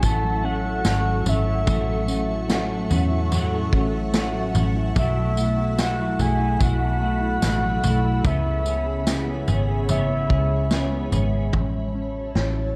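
A foam-muted, punchy vintage fingered bass sits up front in this dreamy, floating dream pop excerpt at 73 BPM in A major, joined by a gritty, saturated vintage drum kit with tambourine and toms, a round octave-layered synth lead with chorus and tape echo, a clean fingered electric guitar playing arpeggios through analog chorus, a hollow-body semi-hollow guitar with harmonic tremolo, an ethereal detuned pad with phaser, and a faint bell-like celesta until 8.8 seconds. Everything is set in a moderate concert hall reverb with a dark, warm production, over chords moving from A6 to B7sus4 to C#m7.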